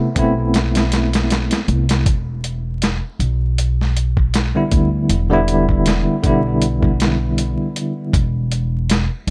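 A dry, close sound sits under a layer of vinyl crackle in this smoky, cinematic trip hop fragment, moving at a lightly swung 79 BPM in E minor. A bright, bell-like tine electric piano with tremolo, tape echo and a filter sweep plays Amadd9 and then Em7 from 0.0 until 8.1 seconds. A woody, pizzicato upright bass and a gritty, overdriven sampler-style drum kit with a thumpy kick, hi-hat and snare join at 0.2 seconds and carry on to the end.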